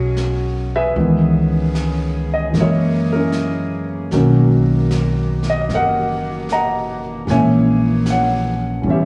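Romantic and tender, this excerpt from a slow jazz ballad in B major moves at 76 BPM with a gentle swing, drifting through G#m11, C#m7, F#13 and a lingering Bmaj7. A warm baby grand piano with short sustain and a woody, thumpy pizzicato upright bass sit up front, while a mellow saxophone section holds soft-attacked chords with light vibrato and a smooth top. Brushed drums enter quietly at 0.2 seconds, and the whole performance sounds like a live club gig heard through the venue's PA, with club reverb.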